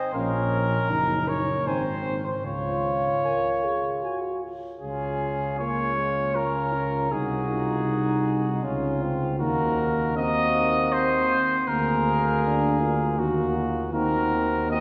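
A warm, vintage-toned trumpet carries the melody up front in this heroic, solemn brass quintet piece in Db major, moving at a stately 79 BPM in 3/4. A clear flugelhorn sings the second line, while a mellow French horn with light vibrato and a distant, roomy trombone fill in the accompaniment, and a dark, soft-attacked tuba anchors the bass up front. Heavy church reverb gives the ensemble a grand, hall-like glow, and the music moves into a new section at 4.8 s in this fragment cut from a longer piece.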